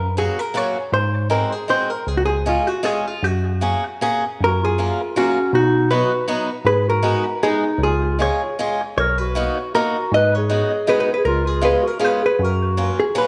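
A moderate recital-hall reverb surrounds this short cut from a longer piece, a charming, nostalgic musette waltz in 3/4 with a swung, rubato feel. A hollow-body jazz guitar carries the melody up front, its dark, clean, compressed tone coloured by analog delay. Beneath it, a bell-like tine electric piano plays the bass with a direct, bright presence. A picked swing-style acoustic guitar, boxy and close, supplies the accompaniment. At 4.4 seconds a clarinet enters with a second line in a classical style, sounding distant and roomy, as the harmony moves from F#maj7 through B, G#m7 and C#7 back to F#maj7.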